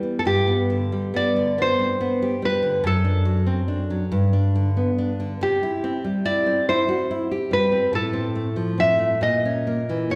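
A wet recital-hall reverb surrounds two up-front nylon-string guitars, giving this short passage from a longer piece the resonance of a church or concert hall. It is a romantic, yearning and solemn duo in 6/8 at a slow 47 beats per minute counted in dotted quarters, with uneven beats and a free, rubato feel. One fingerpicked classical guitar carries the melody between F#4 and E5 in a full-bodied, warm tone, with audible finger squeak. The second fingerpicked guitar plays the accompaniment in a bright voice, spanning F#2 up to G4. Both play together for the full 10.2 seconds over a harmony that moves through G, D7/F#, G, C and F/A before reaching an A#dim chord at 9.2 seconds.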